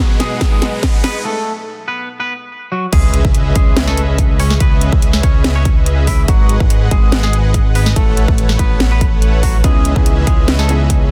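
An overdriven, punchy electronic kick sits up front in this dreamy, emotional future bass excerpt at 143 BPM in a half-time feel in C# minor, joined by a trap kit with sharp snare and metallic hats, a smooth, detuned supersaw riff and a clean, twangy electric guitar melody with delay, while a breathy pad and a bright, worn grand piano sit in the background during a brief build-up, the piano returning near the end, and a background riser leads into an impact as a fat, thick analog bass arrives with the drop at 2.9 seconds, its sidechain pumping on a dense, heavily limited master.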